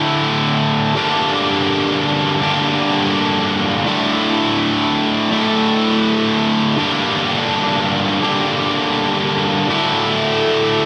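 Brooding and cathartic, this short rock excerpt at 82 BPM features a lone overdriven electric guitar, bright, picked and double-tracked up front, moving between Dsus2 and Gm across its 10.9 seconds, its diffuse ambient delay melting into a lush 2.8-second hall reverb and a dreamy cassette-tape haze.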